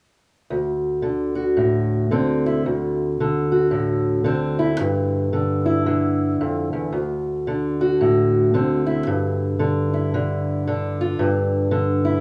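A rough, small-room home recording with light reverb catches a dark, boxy parlour-style steel-string acoustic guitar, fingerpicked and up front, playing a rollicking yet laid-back swung blues alone from 0.5 to 12.2 seconds over D7 and G5 chords in a short cut from a longer piece.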